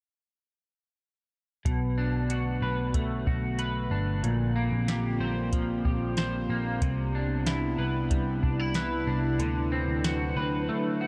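At 1.7 seconds a soft, dry vintage rhythm box with a deep kick, crisp snare and metallic hats starts alongside a round, punchy muted electric bass and an up-front, twangy electric guitar on the edge of break-up, playing arpeggios through analog chorus and delay; a warbling, lo-fi tape-like pad of sustained detuned chords joins at 2.5 seconds, turning this dark, ethereal dream pop excerpt at 93 BPM into a nostalgic drift through Bm7, Bb69, Cmaj9 and D13 under light digital ambience.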